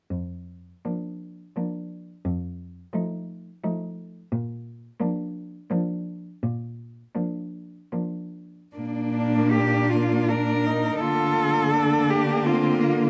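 A smooth, even single cello carries the melody from 0.8 seconds in this tender classical fragment for cello ensemble, played in Bb major and 3/4 at a rubato 68-90 BPM. Beneath it, an up-front bass cello with soft attacks and portamento opens the passage at 0.1 seconds, joined by an expressive, sliding second line and a gently bowed accompanying cello, each single player singing with vibrato. The close, rich voicing sits in light reverb as the harmony settles from Bb/F toward Bb/D by 11.0 seconds.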